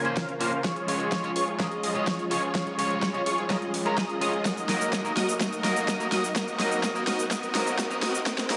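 This is a short, anthemic and euphoric stretch of festival progressive house at 126 BPM in a straight 4/4, cut from a longer piece and built as one continuous build-up with a drum fill running throughout. Up front, a big-room dance drum kit drives hi-hat, shaker and a huge overdriven snare, while an electronic kick layers a punchy, overdriven thump behind it from 0.2 seconds. Huge, bright supersaw chords carry the riff through chorus, delay and a low-pass filter, and a lush, airy pad holds sustained chords beneath, both breathing with sidechain pumping. High above, a catchy plucky unison lead plays arpeggios with vibrato and a moving notch alongside a filter sweep on a digital synth lead, and a slightly broken-up, twangy picked electric guitar adds accompaniment with delay. A thick detuned saw bass sits very quiet underneath, a faint riser enters at 0.1 seconds, and the chords move from Bbmadd9 to Db and then Ebm at 4.5 seconds, all within a moderate, lush hall reverb.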